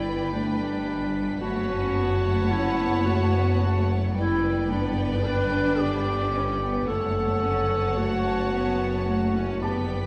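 Mysterious and uneasy, this cinematic suspense cue in a five-beat metre is cut from a longer piece and drifts between G and F# minor chords. A classical-style solo clarinet sits up front beside a focused, vibrato-laden violin melody and a soft-attacked, expressive second violin line, while lush cello and double bass sections lay a rich, distant foundation under a tense, detuned string-like drone with its own reverb. A dark, high violin texture hovers in the background until 3.8 seconds and returns at 9.6 seconds alongside a bright, brilliant grand piano note, with the players heard from further back in a reverberant recital hall.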